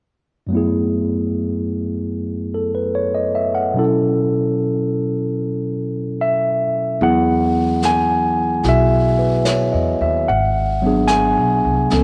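A barky, clean tine electric piano opens this late-night, romantic jazz ballad in E major at 74 BPM with a gentle swing, playing up front through a combo amp and bathed in plate reverb over lush minor-eleventh and suspended chords, until a woody pizzicato upright bass and a soft, natural-sounding brushed drum kit join at 7.0 seconds as the harmony settles onto Emaj9.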